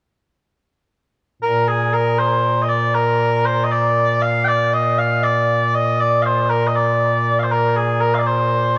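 Proud and ceremonial, this short excerpt of Scottish traditional pipe music moves in 6/8 with a straight feel. A single set of small bagpipes carries the whole performance alone, entering at 1.4 seconds and sounding until 8.8 seconds. Their tone is mellow and sweet, a continuous ribbon of sound colored with vibrato, and the pipes sit up front even though the listener seems placed further back in the room. A long plate reverb lends the space a lingering, glowing tail. The passage is cut from a longer piece, offering a brief glimpse of a stately tune.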